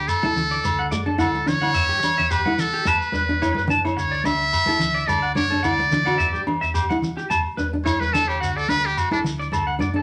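A buzzy, metal-muted trumpet solo sits up front with light vibrato over a carefree, danceable highlife guitar band groove in D major at 108 BPM with a swung 16th feel, backed by twangy, slightly broken-up electric guitar arpeggios, a full-bodied fingerpicked jumbo acoustic guitar, round fingered electric bass, ringing agogo bells, a grainy shekere and close, dry congas played with soft hands, all in a short, danceable clip set in wet club reverb.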